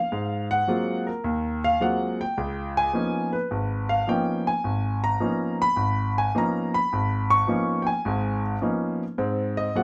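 Swung eighths at 106 BPM in 4/4 carry this relaxed, sophisticated jazz fragment, cut from a longer piece and played by a solo concert grand piano across its full 9.8 seconds. The piano sits up front with an intimate, natural tone, deep bass and audible action noise, ranging from Ab1 to Db6 as it moves from Ab13 to Db13 at 2.4 seconds and settles on Ab7 at 9.2 seconds. A moderate club reverb lends a gentle club ambience around the instrument.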